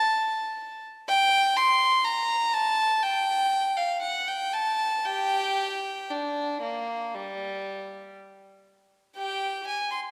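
A lone bowed violin with a rich, reedy gut-string tone plays up close in period style through a solemn, grave baroque-style suite movement in G minor, moving with rubato around 57-62 BPM in 4/4 and ranging from G3 to C6, while a wet concert-hall reverb lingers around it in this brief fragment of a longer piece.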